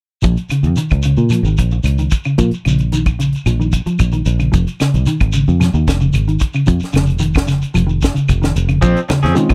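A dry, close 1970s-style studio sound with small room ambience frames this driving, hypnotic afrobeat excerpt in Bb minor at 112 BPM, where a tight funk kit with a high-tuned snare and a round, foam-muted fingered bass sit up front under dark, clean guitar arpeggios with ensemble chorus and grainy shekere, with woody claves in the background, moving from Bbm to F7(no3) and on to Bbm9 at 8.8 s, when twangy, slightly broken-up guitar stabs and low-tuned, thick-skinned congas join, before a clean tine electric piano heard through its built-in speakers enters at 9.3 s.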